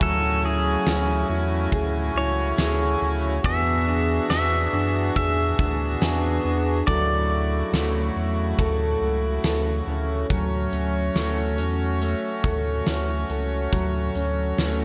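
Dream pop in a blissful, ethereal mood, cut from a longer piece, where a bright, twangy pedal steel guitar with fingerpicks, slide, volume swells and digital delay sings the melody until 9.4 s over reedy, slowly beating accordion chords, clean, dark electric guitar arpeggios through analog chorus and delay, a round sine sub bass, and a big-room acoustic drum kit with a punchy kick, fat snare, hi-hat, ride and tambourine, all set in a moderate scoring-stage reverb as the harmony moves from Dmaj9#11 to E7 and Dmaj7.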